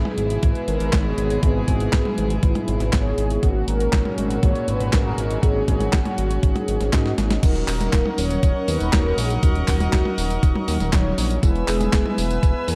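This nostalgic, bittersweet italo disco excerpt at 120 BPM opens with a fat, detuned sawtooth analog bass up front, a clean 12-bit drum machine with snare, handclaps, hi-hat, tambourine, crash and toms re-recorded in a large room, mellow brassy synth brass carrying a round, vibrato-laden melody through chorus, cassette tape and delay, more dark synth brass stabs with sampler grit and delay, and a rich, reedy chamber string section holding bowed gut-string chords, with a thumpy, tape-softened electronic kick driving in moments later. An analog polysynth filter sweep runs through the opening 7.4 seconds until a drum fill at 7.1 seconds leads into a new section moving from D#m7 to E in a dark, lightly reverberant mix.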